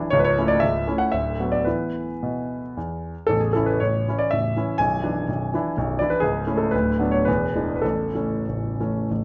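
Proud and rustic, this brief fragment of a romantic triple-time dance in 3/4 moves with dotted rhythms and supple rubato, a solo concert grand carrying it from 0.0 to 9.2 seconds. The piano sounds clear, worn and intimate, sitting up front with audible action noise, deep bass and a short sustain, set in light reverb. Its harmony circles through A/C#, Bm/D, E7 and back home to A by 7.8 seconds.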